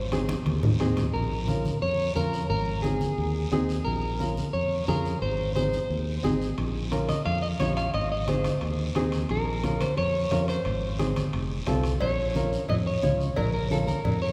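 A slightly broken-up electric guitar with spring reverb carries the fiery, danceable melody of this 177 BPM cumbia in Bb minor, over a dark, round fingered bass up front, a clear, woody, slightly detuned upright piano, low-tuned congas, a raspy guiro, and ringing timbales and cowbell that play a drum fill at 0.3 seconds, drop out, and return at 6.6 seconds, all set in the long reverb of a church.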